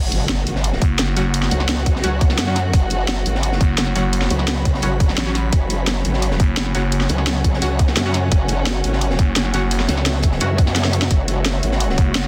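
A straight 172 BPM 4/4 groove drives this futuristic, mechanical stretch of dark technical drum and bass, where a tight, up-front electronic kick and a layered kit with a cracking snare sit over a very quiet, gritty breakbeat kit, while an aggressive, wobbling growl bass with chorus and overdrive pumps alongside a thick FM bass that punches in at 0.8 seconds and returns in bursts, the longest from 3.6 to 7.1 seconds. Lush bowed strings hold sustained chords, an ethereal pad of detuned triangle and sawtooth voices drifts in at 1.2 seconds, bright, punchy orchestra-hit-like synth stabs ring with reverb and tape echo in the background, and an electronic impact and swell open the passage and return near a short drum fill.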